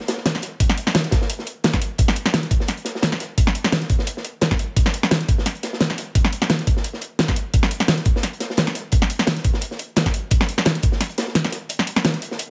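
Rolling and lush, this drum and bass fragment at 173 BPM in 4/4, with a light swing on the sixteenths, layers a dark, saturated acoustic breakbeat kit with a rolled-off top and medium-tuned snare under an up-front electronic pop kit of fat, produced snare and metallic hats, while a gritty, thumpy, compressed sampler-style kick enters at 0.6 seconds and stops at 10.9 seconds, all set in a small room reverb.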